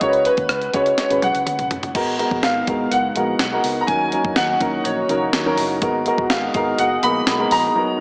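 Nostalgic and urgent, this short cut from a longer 1980s-style pop piece moves at 124 BPM in a straight 4/4, with a clear, open baby grand piano carrying the melody up front through lush chorus and tape echo, while a second, warm and natural baby grand plays accompaniment beside it. Underneath, a clean 12-bit drum machine with a thumpy kick, medium-tuned snare and tape-tinged sampler character plays a fill before a sawtooth pad, detuned and evolving with a slow attack, enters in the background at 1.9 seconds, and a dark, foam-muted, round electric bass sits low in the mix. The chords drift from Db7sus4 through Abm9 and Ebm7, the dreamy mix is soaked in plate reverb with a small-speaker sound, and a break arrives at 7.8 seconds.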